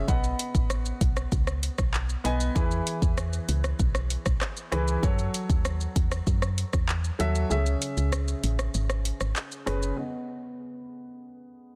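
Dancehall at 97 BPM with a bouncy, hypnotic feel, this short excerpt sets a round, woody FM bass and an up-front electronic drum kit of deep kick, metallic hi-hat, handclaps, rim click and shaker under a polished, low-pass-filtered grand piano moving through B, E, F#m and C#m, with the kick dropping out at 7.5 seconds and a filter sweep on the piano alone from 10.0 seconds to the end at 11.8, all in a dry, dense, heavily limited modern master.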